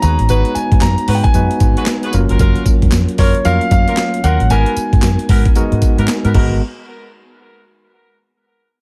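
A compressed, up-front drum sound sits in a digital ambience on this punchy, slick new jack swing cut from a longer R&B piece, moving at 114 BPM in 4/4 with a 16th-note swing in G# dorian. The gritty, sampler-style breakbeat kit pairs a thumpy kick and medium-tuned snare with hi-hat, handclaps, tambourine and crash cymbal, while a vintage, foam-muted fingered electric bass adds a dark, round, amped low end. A barky tine electric piano, clean through its built-in speakers, carries the accompaniment over the G#m7, F#maj7 and G#m9 changes, and a tight, jazz-style horn section with light vibrato punctuates with stabs under delay. On top, a concert grand piano plays the melody with an intimate, polished tone, audible action noise, deep bass and long sustain, also touched by delay. The electric piano slips in a fill from 5.8 s, and the band has dropped out by 6.6 s as a new section begins.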